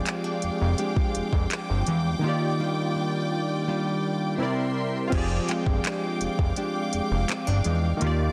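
Fat, saturated analog bass, round detuned sawtooth keys with chorus, bowed studio strings with vibrato, and fingerpicked nylon-string guitar arpeggios through digital delay open this sensual, moody contemporary R&B excerpt at 83 BPM in F dorian, moving through Fm69, Ebmaj9 and C7. A smooth, up-front electronic drum kit with soft kick, handclaps, hi-hat and crash, roughened by vintage 12-bit sampler grit, enters at 0.1 seconds. At 5.5 seconds a very quiet, glassy wavetable pluck adds crystalline, warbling high notes, all set in digital ambience under a dense, heavily limited modern master.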